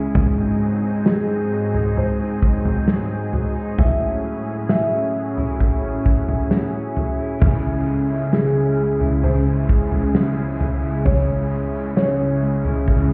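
Ethereal and hazy, this dream pop passage drifts along in an even 4/4 and is cut from a longer piece. A lush, thick unison pad, detuned and sawtooth-edged with a slow attack and chorus, holds sustained chords up front from the start. Alongside it, a twangy electric guitar at the edge of break-up plays fingered arpeggios through lush chorus and digital delay. A loose indie drum kit enters at 0.2 seconds with a punchy kick, a medium-tuned snare and toms, and a felt-muted upright piano adds a soft, dark, intimate melody from 1.1 seconds, its notes trailed by digital delay. At 7.4 seconds, as the harmony arrives on C#m after moving from G#7 through F#m7/A, a quieter overdriven guitar joins with picked, compressed accompaniment shimmering under harmonic tremolo and ensemble chorus. The whole mix sounds muffled, as if heard through a wall, with stone room reverb and a dulled top end.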